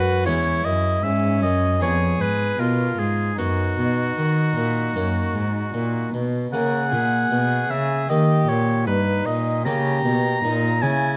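Classical baroque-style sonata movement with continuo, serene and radiant, cut from a longer piece, where a clear, punchy oboe with light vibrato carries the melody up front over a gut-strung violin's second line, a bright, dry, plucked harpsichord accompaniment and a rich, reedy bowed cello bass, all heard through close, detailed microphones in a moderate recital hall reverb.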